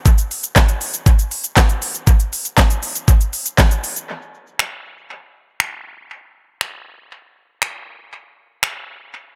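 Summery and carefree, this brief pop excerpt moves at 119 BPM in a straight 4/4 feel. An electronic, layered drum kit sits up front from 0.1 seconds, mixing finger snaps, handclaps, hi-hat, shaker, a knocking kick and a fat snare with crisp hats and a tape-warm sheen, all trailed by dub echo. A group handclap adds a human, hollow touch between 0.6 and 3.7 seconds, heard close and dry but very quiet beneath the kit. The opening stretch plays as a drop before the music moves into a new section at 4.1 seconds. Light reverb and an echo-heavy mix give the polished production a spacious, buoyant sound.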